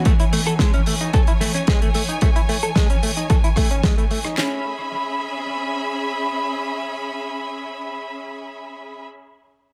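Groovy, sensual nu-disco in a short, echo-heavy cut, where a lush, bowed string section holds sidechain-pumped chords throughout, moving from Amaj7 to C#m7. Over the first 4.6 seconds, a compressed, picked clean electric guitar plays a riff through analog chorus, tape echo and a filter sweep. Alongside it, a dry, damped 70s kit with a fat snare and rim clicks sits under a punchy, overdriven house kit of kick, cracking snare and handclaps, and both kits stop near 4.5 seconds, leaving the strings alone in a spring-reverb ambience until 9.0 seconds.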